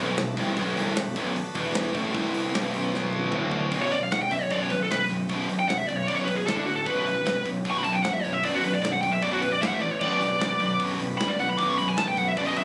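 A dark, high-gain lead guitar solo takes over at 3.8 seconds in this epic, brooding heavy metal excerpt, soaring over twin distorted rhythm guitars riffing alongside a growly fuzz bass, a tight modern drum kit with fills, and a majestic full pipe organ whose sustained chords frame the opening and return at 10.0 seconds, all heard through a phone recording of a small club room.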